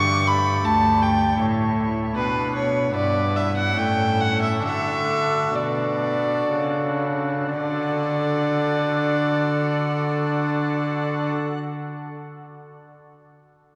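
Serene and flowing, this baroque-style sonata movement in D major and 3/4 moves at 57-80 BPM, slowing from 1.0 to 7.5 seconds, as a warm, gut-string period violin carries the melody over a rich cello bass with light vibrato and a pipe organ on a nasal cornet solo stop with chiff and tremulant, all bathed in a wet cathedral reverb, in a passage cut from a longer piece.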